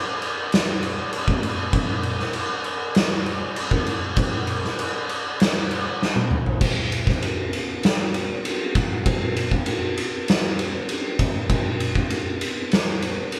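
Metal drum excerpt with a hypnotic, sludgy mood, where an oversized, low-tuned acoustic kit of kick, snare, toms, ride and crash sits up front with a dark, gritty, saturated tone, a punchy kick, a medium-tuned snare and a rolled-off top, played as a band would in one room with light reverb and a bright stone-room character, turning on a fill at 6.0 seconds into a new section at 6.6 seconds.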